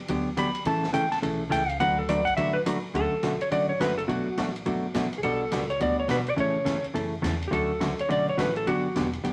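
Cheerful and playful, this brisk western swing cut in D major moves at 210 BPM with swung eighth notes. A clean, warm lap steel carries the melody up front, with an electric slide guitar solo over the opening 2.9 seconds, while a dark, compressed hollow-body jazz guitar comps close by. A woody, thumpy pizzicato upright bass and a distant, roomy big-band drum kit with a boomy kick sit further back, all under a wet studio reverb and a layer of vinyl crackle.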